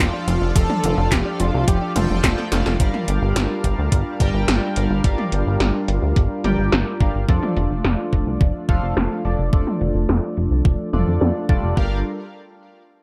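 A thumpy, overdriven electronic kick enters at 0.6 seconds beneath an up-front, glossy chorused synth bass and 80s electronic pad drums, with gated reverb on the snare and toms and metallic hats, driving a cinematic, nostalgic G minor synthwave excerpt at 107 BPM. A thick, nasal unison lead with vibrato and tape echo carries the opening melody over a very quiet, round pluck playing arpeggios, and both fall away by about 2.8 seconds after a drum fill. Throughout, sustained chords from a mellow, sidechain-pumped supersaw with 12-bit sampler grit and bright, chorused polysynth stabs with delay move between Dm/F and Gm7, while filter sweeps on the drums, bass, supersaw and polysynth run until 11.8 seconds in a dry, close sound.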